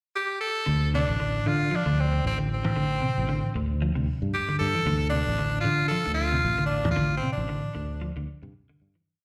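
A raspy, gritty tenor saxophone opens this defiant, funky afrobeat piece alone over a brief pickup at 0.2 seconds, pushing forceful, vibrato-laced hook phrases up front through slapback echo and plate reverb. At 0.7 seconds the groove settles on a single D7(no3) chord as a round, amped fingered electric bass enters with a syncopated riff, and a dark, clean picked electric guitar joins with an arpeggiated ostinato, its sound coloured by lush chorus, slapback echo and plate reverb. It sounds like a live gig heard through the venue's PA with a moderate club ambience, and the whole piece fades out from 7.0 seconds.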